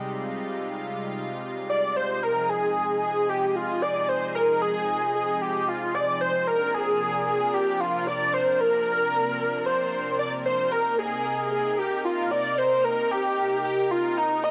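Synthwave at 113 BPM in a straight 4/4, nostalgic yet driving, this cut from a longer piece opens on a lush, airy pad of detuned sawtooth and square waves with a noise layer, a soft attack and chorus, sustaining chords that move from Abmaj7 through Fm7, Bbadd9 and Cm7. At 1.7 s a bold, up-front unison lead enters with the melody, its wave-folded sawtooth, triangle and sine blend carrying a fast attack and vibrato, coloured by lush chorus, cassette tape and analog delay. The whole home cassette recording, tuned to A4 = 439 Hz, sits in a wet spring reverb.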